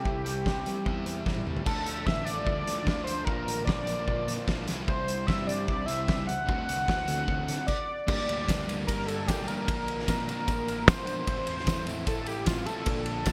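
This bright, 1980s-style digital production with a lush hall reverb frames a restless, cool indie rock excerpt in G dorian at 150 BPM, cut from a longer piece. An up-front, retro octave-doubled lead with detuned sawtooth and triangle tones, chorus and vibrato carries the melody over a double-tracked, overdriven semi-hollow guitar riff, a growling picked electric bass in the background, and a loose acoustic drum kit with a fat snare, tight kick and gated reverb that plays a fill at 1.3 seconds. A silky, very quiet analog string pad holds sustained chords until 7.7 seconds, and a jingly tambourine joins at 8.1 seconds as the harmony moves from Gm through Bbmaj7 to Am.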